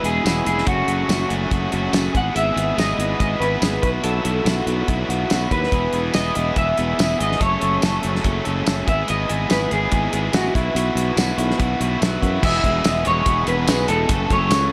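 Upbeat and jangly, this indie rock excerpt moves at 143 BPM in a straight 4/4 and sits in E major. A slightly broken-up electric guitar through a small old amp carries the melody, its picked lines colored by analog chorus and tape echo. Beneath it, a double-tracked overdriven electric guitar drives the picked riff up front, while a sustaining fretless electric bass adds a bright, growly low end. The cloth-damped drum kit sounds thuddy and close in its small room, with dark cymbals, a tight kick, a medium-tuned snare, hi-hat, crash and tambourine, its top end rolled off. Light reverb surrounds the band as the chords cycle through E, F#m, Emaj7/G# and Bsus4, with a new section arriving at 12.4 seconds.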